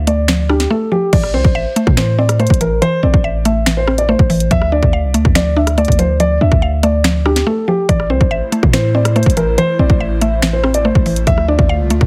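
A dark concert grand piano carries the melody up front in this menacing, cold drill excerpt, its mellow, boxy tone revealing audible action noise and trailed by tape echo. Set at 142 BPM in 4/4 with a half-time feel and in A minor, the track pairs it with a mallet-like synth pluck whose woody, round FM tone is thickened by chorus. A hard-hitting 808-style bass sits prominently beneath, punchy and heavy with a fast attack that decays. The electronic drill kit, entering at 0.1 seconds, brings a hard-clipped kick, sharp snare, rim clicks, finger snaps, hi-hats and crash cymbal, while a brief break arrives at 7.5 seconds. From 7.9 seconds an airy, breathy pad drifts in the background with slow-attack sustained chords and a moving notch, as the harmony cycles between Dm and Am under a heavily compressed, radio-like digital ambience.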